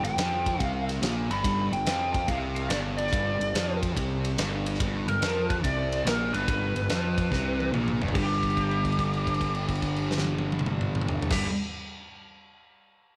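All four parts start together at the top of this gritty, driving cut from a longer blues rock and southern rock track. It is a power trio setup at 143 BPM in 4/4 with a swung eighth-note feel, tuned to A4 = 443 Hz. A biting lead guitar carries the melody through wah and overdrive, while a thick, double-tracked fuzz guitar grinds out a distorted riff over a G chord. Underneath, a growly, up-front fuzz bass adds overdriven weight. A big acoustic rock kit with a fat snare, tight kick, crash, ride and toms sits mid-forward with a rolled-off top and rolls into a fill at 7.3 seconds. At 8.1 seconds the harmony settles onto a G5 power chord, and a held note rings until 11.2 seconds inside a moderate spring reverb.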